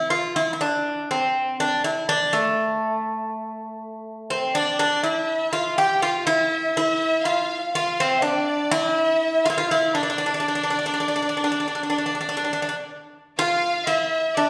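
A bright, metallic Greek bouzouki opens this Turkish piece in 9/8, its picked double strings sitting up front with some octave-doubled courses as it carries a longing, melancholic melody. At 4.5 seconds a lush symphonic violin section joins on a higher second line, bowed as a full ensemble with intense vibrato, and the music moves into a new section at 13.4 seconds before this cut from a longer piece ends. The pair is heard from further back in a recital hall whose wet reverb gives the sound a spacious, resonant glow.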